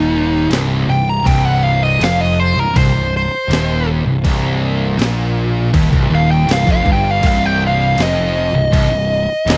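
Hypnotic and brooding, this dry, close 1970s-style stoner and doom metal excerpt is led by an up-front fuzz lead guitar soloing through distortion and tape echo over a low C minor riff from two dark, thick fuzz guitars and a bright, double-tracked overdriven electric guitar sitting in the background, with a growly fuzz bass underneath and a gritty, compressed breakbeat sampler-style drum kit with a thumpy kick and high-tuned snare entering at 0.5 seconds, its kick and snare briefly dropping out at 6.9 seconds.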